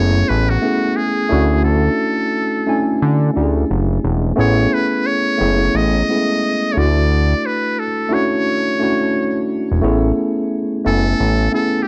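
Lo-fi hip hop at 88 BPM with a swung 4/4 feel, this hazy, melancholic snippet from a longer piece sets a buzzy, close-miked metal-mute trumpet playing a jazz-style solo line with light vibrato and scooped notes over a mellow, worn, slightly out-of-tune tine electric piano softened by a low-pass filter and cassette tape, while a fat, detuned sawtooth analog bass with a filter sweep sits up front through the F#m11, Dmaj9 and Amaj9 changes, all bathed in light reverb and the warbling pitch drift of old tape.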